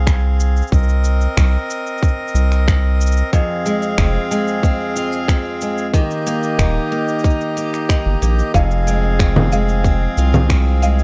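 A straight four-beat pulse carries this short folktronica cut, with a tight, up-front electronic kick and a tape-colored layer of electronic finger snaps, cabasa and congas that sound re-recorded in a large room. Underneath, a round analog bass sits deep and dark, its fast attack giving way to sustained, nasal notes. A reedy, hollow accordion holds close-miked chords from the opening, moving through F minor, C minor seventh and E-flat for an intimate, delicate mood. At 3.3 seconds a bright picked steel-string acoustic guitar enters with arpeggios, finger squeaks audible and a digital delay trailing behind it. Near the close, at 8.6 seconds, a woody folk marimba struck with hard mallets adds a rustic second line in the background, also touched by delay.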